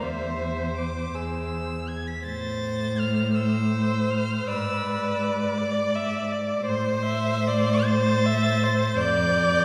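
A string quartet begins together in a slow, elegiac romantic movement in A minor at 54 BPM in a rubato 6/8: a smooth, vibrato-laden first violin sings the yearning high melody above an even, warm second violin line, while a rich, expressive viola with soft attacks and portamento accompanies and a clear, focused cello holds the bass up front, each part played by one bowed player in a wet concert hall reverb heard from further back in the room, in a passage cut from a longer piece.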